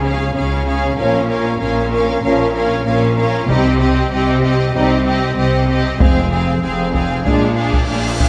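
This cinematic, epic orchestral film score passage is heroic and dramatic, moving at 96 BPM in a straight 4/4 and cut from a longer piece. A huge but very quiet impact opens it as the full string body sounds together: rich, focused first violins carry the high melody with vibrato, expressive second violins with a soft attack add a second line beneath, clear, distant violas fill the middle, and smooth, even cellos join bright, focused double basses in the bass. A warm French horn section enters at 1.0 seconds with sustained chords in the background. At 3.5 seconds a close, dry taiko ensemble struck with heavy sticks drives in, and round, soft-mallet timpani sound briefly behind it. The harmony moves from Db through Bbm, Cm and Fm before settling on Bb7, and a bright cymbal swell arrives at 7.5 seconds, all framed by a moderate scoring-stage reverb that gives the lush bowed strings their sense of space.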